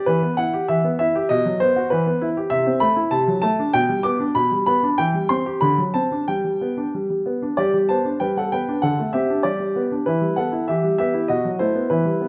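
A warm, natural-sounding baby grand piano sits up front in a moderate recital-hall reverb, playing a graceful, cheerful classical-period sonatina alone in G major at 97 BPM in 2/4 with a rubato feel, tuned to A4 = 438 Hz and ranging from B2 to D6, in this short cut from a longer piece that states the same passage twice, with the repeat starting at 7.6 seconds and reaching a B7 chord at 11.3 seconds.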